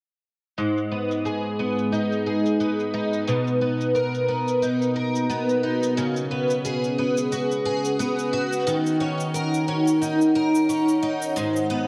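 Folktronica in G# minor at 89 BPM with a gentle 16th-note swing, this intimate, wistful excerpt from a longer piece is tuned to A4 = 444 Hz and moves through G#m7, Bmaj7, C#7sus4 and D#m7 before returning to G#m7. Up front from 0.6 seconds, a shimmering, octave-doubled twelve-string acoustic guitar picks arpeggios, its fresh strings and finger squeaks shaped by analog chorus, a low-pass filter and digital delay, while an overdriven electronic shaker, re-recorded in a small room, sits low in the mix. At 1.3 seconds a warbling, detuned tape-like pad enters with a slow attack and sustained chords, its nostalgic lo-fi character carried by chorus, built-in reverb and a filter sweep, inside a light, digitally ambient space.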